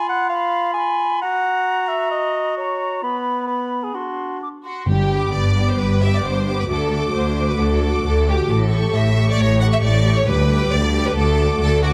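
In a straight 4/4 at 133 BPM, this soaring, adventurous cinematic fragment opens with a dark, up-front cor anglais, a bright clarinet and an airy, mellow flute, then settles into G major at 4.9 s as lush bowed strings take over, with a high violin melody and a rich, focused second violin line over a distant viola part and cello and double bass sections, while hard-mallet timpani sound in the background at 4.9 s and 10.3 s, all in a moderate recital hall reverb.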